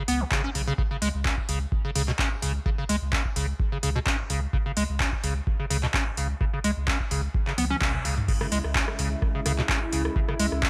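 A swung 4/4 groove drives this gritty, trippy acid house piece, with an overdriven, booming analog drum machine of metallic hats, handclaps, rim clicks, toms and crash sitting up front beside a deep, overdriven electronic kick. A squelchy, resonant square-wave acid riff with filter sweeps, tube saturation, tape echo and sidechain pumping rides over a round sine sub bass. A drum fill and band accent lead into the drop at 8.3 seconds, where a lush, airy, detuned sawtooth pad enters with chorus and phaser on a C# minor chord, all set in light digital ambience.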